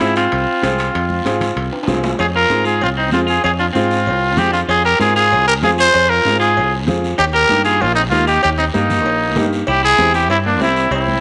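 A gritty, growling trumpet leads from the first beat of this fiery, passionate cumbia excerpt in F minor at 192 BPM, its scooped, vibrato-laden notes sitting up front over a twangy, clean picked electric guitar line and the woody, short-sustained chords of a vintage upright piano. A punchy, growly fingered electric bass anchors the groove, while close, dry congas, a raspy guiro and ringing metal-shell timbales and cowbell fill in the background, with a drum fill at 1.7 seconds leading into the second section. The harmony holds on F minor before moving to E-flat at 7.2 seconds and C at 9.7 seconds, all inside a small room with moderate echo-chamber reverb and a softened top end.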